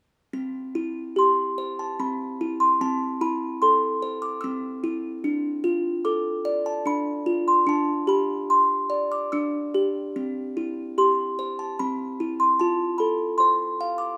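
A children's lullaby in C major, gentle and tender, drifting at a rubato 74 BPM in 3/4 time. A solo music box from a large box plays alone from 0.3 to 14.2 seconds, its delicate, tinkling plucked tones sitting up front, slightly out of tune, with a boxy small-room character, all placed in a moderate recital hall reverb. This short cut from a longer piece moves through C, Am/C, Dm, G5, C and F.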